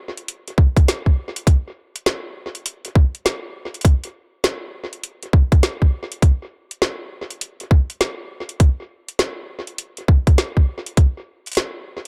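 The mix is echo-heavy with a light reverb, and both drum parts sit up front with the close feel of a small room. This glitch hop excerpt moves at 101 BPM in 4/4, with a 63% swing on the sixteenths that gives it a swaggering, playful strut. A layered, produced drum kit of hi-hat and snare starts at 0.2 seconds, its woody snare and metallic hats trailing through an analog delay. A tight electronic kick enters at 0.6 seconds and stands louder than the kit, dropping out at 11.1 seconds while the hats and snare carry on to the end.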